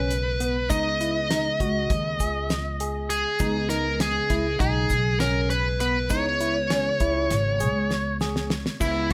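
A bright, smooth overdriven lead guitar carries the melody up front with digital delay in this tense, brooding progressive instrumental excerpt in 9/8, set over a clean hollow-body jazz guitar in the background, barky, lightly driven tine electric piano arpeggios, growly pizzicato upright bass, a dry, damped 70s drum kit with a fat snare and dark cymbals, and a grainy egg shaker entering at 0.7 seconds, as the harmony moves from G#m to C#m7 at 6.1 seconds and a drum fill arrives at 7.9 seconds within a light reverb.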